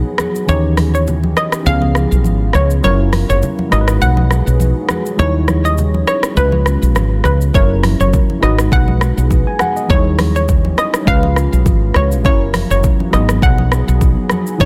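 Riding a lightly swung sixteenth-note groove at 102 BPM in 4/4, this smooth, sultry afrobeats passage in G# minor, cut from a longer piece, opens as a break that runs through its first 7.5 seconds. An electronic, produced afro-pop kit sits up front with a deep kick, dark hi-hats, rim clicks and shaker, while very quiet congas add a bright, thin-skinned, low-tuned acoustic tone, close and dry with hard hands. From 0.5 seconds a woody fretless electric bass, round and hollow-bodied and heard direct and amped, carries the low end prominently beneath a repeating D#7b9, C#7, F#7, G#m7 cycle. A worn, slightly out-of-tune tine electric piano played clean through a combo amp supplies accompaniment with a phaser, and a moody sawtooth pad with a sub octave holds sustained chords in the background, its slow attack, long release, chorus, reverb and sidechain pumping keeping it mellow. On top, a hollow, bouncy square-wave pluck with a fast, decaying attack, ring modulation, a filter sweep, chorus and delay states the melody, all set in a digital ambience.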